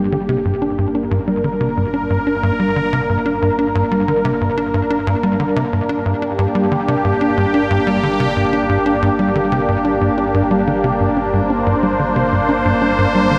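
A straight 4/4 pulse at 91 BPM carries this hypnotic, expansive piece of ambient, sequencer-driven space music in G minor, resting on a single G minor chord for the 13.4-second clip. Up front, a tight, punchy sawtooth sequencer bass drives a riff through subtle chorus and analog delay, while a bright, airy pad of detuned sawtooths and a noise layer holds evolving chords bathed in chorus and shimmer reverb. A very quiet, lo-fi pluck warbles through vintage arpeggios, and a deep, round sine sub bass fades in from the background, all within a wet concert hall ambience.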